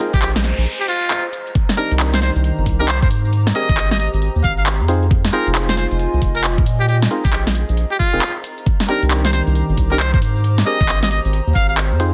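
Swung two-step garage rhythm at 135 BPM drives this bouncy, soulful UK garage fragment, with a knocking electronic kick and a layered kit of woody snare, handclaps, shaker and metallic hats sitting up front, briefly giving way to a break between 0.7 and 1.6 seconds as a background noise sweep passes. A deep, round dub sub bass and a warbling, nostalgic tape-like pad both pump against the kick, while hollow, chorused organ stabs with digital delay outline lush extended chords moving from Bb9sus4 through Cm9, Abmaj9#11 and Fm7. Over it a close-miked trumpet with a metal mute plays a buzzy, jazz-style solo line with vibrato and scooped notes, echoed by delay, all set in a dry, dense, heavily limited mix with vinyl crackle.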